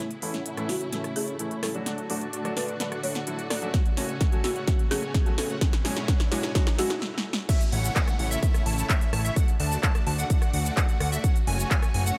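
A huge, detuned supersaw riff drives this triumphant, anthemic festival progressive house excerpt, filtered and pumping through a build-up where a woody marimba melody and a polished grand piano sit in the background over lush bowed strings, a fat saturated analog bass and very quiet risers and swells. A punchy, up-front electronic kick arrives at 3.7 seconds alongside an overdriven big-room kit of crisp hats, snare, handclaps, cabasa, rim clicks and crash cymbal. After a brief stop, the drop at 7.5 seconds brings in a bright, catchy arpeggiated lead with vintage 12-bit sampler grit, all inside a digital ambience.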